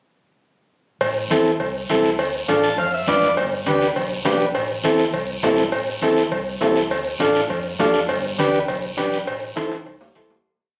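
Driving and passionate, this brief cumbia piece in A minor moves at 204 BPM, featuring a reedy, up-front combo organ playing rhythmic triad chords over an Am, Dm and G cycle, with a transistor organ fill at 2.5 seconds. Beneath it, a dark, round hollow-body electric bass plays a punchy cumbia figure, low-tuned congas sit in the background, a ringing vintage cowbell and timbales ring out, and a raspy, close guiro scrapes long and short strokes. Captured on a phone in the room with moderate studio reverb, the groove fades out from 8.6 seconds as a drum fill arrives at 9.6 seconds.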